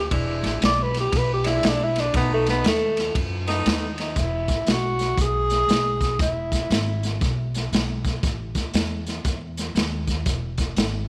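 A swung shuffle at 118 BPM in 4/4 drives this swaggering, gritty electric blues excerpt, cut from a longer piece and moving from E7 to B7, E, A5 and back to E. A crunchy breakbeat drum kit sits up front with a tight kick, medium-tuned snare, hi-hat and dark ride cymbal, its saturated sound rolled off at the top. Underneath, a pizzicato upright bass with steel strings gives a woody low end, colored by tube saturation, and carries on until 11.1 seconds. A breathy tenor saxophone takes a solo from the opening, mellow and jazz-inflected with light vibrato and scooped notes, sounding both up front and roomy before it stops at 7.2 seconds. Over the first few seconds, a saxophone section adds warm stabs with vibrato, ending at 3.9 seconds, and light reverb lends a small-room ambience.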